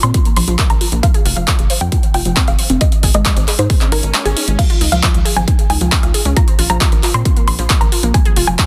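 A straight 4/4 pulse at 135 BPM drives this short cut from an uplifting trance piece, with a punchy, up-front electronic kick anchoring a layered big-room dance kit of crash cymbal, handclaps and metallic hi-hats. Underneath, a tight sequencer bass built from sawtooth and square waves gives a driving, filter-plucked line from F1 to Bb2, its fast-decaying notes pumping against the kick through sidechain compression. Two lush, detuned unison plucks carry the top: one sings the soaring melody between Ab4 and C6, while the other spins arpeggios from F3 to Ab5, roughened by wave-folding, ring modulation and vintage 12-bit sampler grit. Both plucks pump with the sidechain and trail dub echoes, and a filter sweep runs across the arpeggio sound for the whole passage. Throughout, the harmony moves from Bbsus2 through Ab5 and Db back to Bbsus2 and lands on Fm. Around 3.9 seconds a soft electronic swell rises in the background as the kick briefly drops out from 4.1 to 4.6 seconds. 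Light digital reverb and a dense, heavily limited modern master give the uplifting mood a forceful finish.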